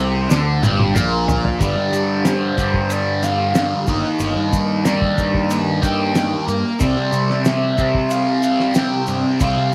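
Dark and trippy, this brief psychedelic rock passage pairs a bright, double-tracked fuzz guitar riff with distortion and phaser over a round, overdriven fuzz bass, while a muffled, cloth-damped drum kit with a fat snare opens on a fill and sits in the background beside a grainy tube shaker, and from 1.6 seconds a distant, airy concert flute carries the melody through tape echo in a small, lightly reverberant room.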